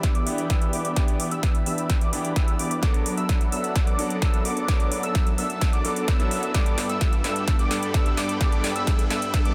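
This powerful, emotional festival progressive house excerpt in E minor at 129 BPM opens mid build-up: an up-front, punchy electronic kick drives a drum fill of snare and metallic, high-passed hats, while huge, detuned supersaw chords pump beneath a filter sweep across Em7, Bm7/F# and Gadd9. A bold unison lead plays high arpeggios with vibrato under its own filter sweep, and dub echo trails the lead, the supersaws and a brilliant concert grand piano that sits in the background beside a lush, phased pad, while a fat, saturated analog bass stays very quiet underneath. A faint electronic riser enters at 5.5 seconds, adding lift within a dense, heavily limited master with light digital reverb.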